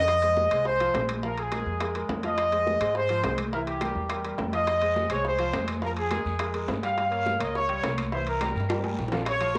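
Salsa in F minor at a driving 209 BPM, this passionate, danceable clip from a longer piece puts a bright trumpet section up front on the melody, carrying cassette-tape grit, over a worn, intimate baby grand with audible action noise and a thumpy, gut-strung pizzicato upright bass moving through Fm7, C7 and Gm7b5 changes. Ringing metal-shelled timbales lead the percussion, with high-tuned congas and soft-handed bongos in the background, faint woody claves, and a raspy guiro joining at 4.7 seconds. The whole mix sits in a moderate spring reverb with a homemade cassette character, and a drum fill at 8.4 seconds closes the passage.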